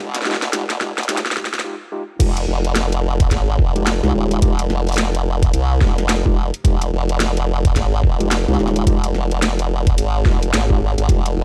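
The formant-sweep wobble bass stands out, up front and compressed with a chorused, pulse-and-sine wobble beneath a mellow tine electric piano's clean stabs on Fm9, while a cracking, overdriven drum kit with bright hats and a gritty, pitched-down electronic kick drive this funky glitch hop excerpt in F minor at 108 BPM with swung 16ths, a build-up and filter sweep giving way to a brief break before the drop lands at 2.2 seconds, all in a dry, gritty cassette-tinged sound.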